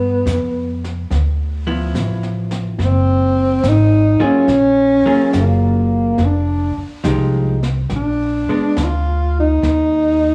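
A close, homespun cassette sound with small-room ambience and a touch of studio reverb frames this intimate, wistful jazz ballad excerpt, cut from a longer piece, with a gentle swing feel. Up front, a mellow tenor saxophone takes a solo with subtone, vibrato and scooped notes, its tape-tinged tone smooth on top, over a woody, growly pizzicato upright bass and softly brushed drums that enter at 0.3 seconds. A dark, clean, compressed hollow-body archtop guitar adds picked accompaniment from 1.7 to 8.8 seconds, drifting through lush extended chords before the harmony drops away near the end.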